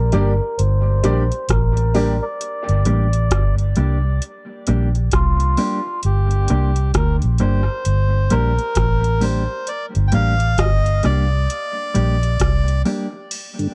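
A slow, meditative dub reggae groove at 66 BPM in 4/4, with a swung sixteenth-note feel, sits on G minor for this hypnotic excerpt cut from a longer piece. A booming analog drum machine, up front with a deep kick, metallic hats, rim click and crash cymbal, runs beneath a dark, round, foam-muted fingered electric bass that carries the low end from the start. A reedy, breathy melodica, close-miked and nasal, states the melody through a low-pass filter and tape echo, while a mellow, compressed electric guitar adds accompaniment soaked in spring reverb and echo. A clear, woody upright piano drops brief echoed stabs only in the opening 2.1 seconds, and a tonewheel organ with key click, overdrive, chorus vibrato and slow rotary speaker appears just at 13.6 seconds. A filter sweep runs across the section, and the dry, close 1970s-style studio sound keeps the bass and drums forward in the mix.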